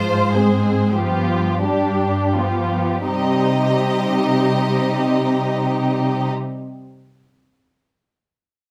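A clear, intense violin section sings a yearning melody over lush, vibrato-rich second violins, expressive violas and up-front cellos gliding with portamento in this elegiac, rubato string orchestra passage in 6/8, which slows through its opening 3.1 seconds before the harmony settles at that point, all bathed in light reverb.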